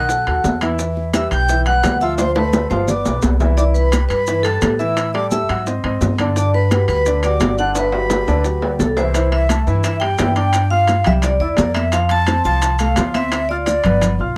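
A dry, close 1970s-style studio sound with light reverb frames this sunny, sophisticated Afro-Cuban jazz excerpt at a brisk 172 BPM in straight 4/4, moving from G major to C major at 9.2 s. A bright, ringing vibraphone with medium motor vibrato carries the melody over a breathy, close-miked concert flute second line and a polished, present baby grand piano, while a woody, thumpy pizzicato upright bass sits up front. High-tuned congas played with hard hands and round, low-tuned, saturated bongos sit in the background, joined by metal-shell timbales with a vintage, band-limited ring and grainy, mellow maracas, with drum fills at 2.2 s and 7.8 s.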